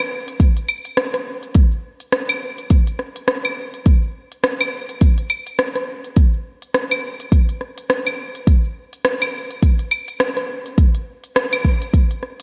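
A swung sixteenth-note groove in 4/4 drives this downtempo piece cut from a longer work, with a deep house drum kit of smooth hi-hats, cabasa, claves and rim click entering at 0.3 seconds, joined at 0.4 seconds by a deep, layered electronic kick drum. Both drum parts sit up front with a polished, produced sound and studio reverb, while a lush hall ambience soaks the mix in a dreamy haze. The mood is warm and meditative, and the kick drops out at 12.1 seconds just before the kit's final moments.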